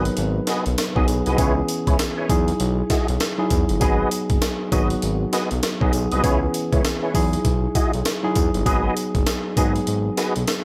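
This punchy, slick new jack swing excerpt opens with a worn, slightly out-of-tune tine electric piano, a tonewheel organ and a smooth synth bass all sounding at once, with a breakbeat sampler-style drum kit arriving at 0.1 seconds. The electric piano carries the accompaniment up front through a combo amp, while the clear organ adds stabs above it, colored by chorus vibrato and a slow rotary speaker. Underneath, the detuned synth bass blends sawtooth and square waves into an evolving, sustained tone with a fast attack and a touch of vibrato. The compressed, gritty drums sit up front with a thumpy kick, a high-tuned snare, hi-hat and tambourine, their pitched-up sound re-recorded in a large room and treated with gated reverb. The 16ths carry a swung feel as the harmony cycles through G#m7, C#m7 and Emaj9, all set in a digital ambience until the piece is cut off around 10.6 seconds.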